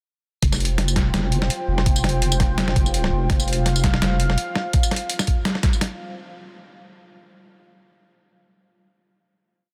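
A deep, detuned wobble bass sits up front in this dark, spacious half-time drum and bass drop, its modulated phrases changing wobble speed until 4.4 seconds over a gritty, pitched-down sampler-style kit of medium-tuned snare, closed hat and tambourine, a thumpy compressed kick, and a moody sawtooth pad with a slow attack and sub octave, set in digital ambience with a dense, heavily limited modern master.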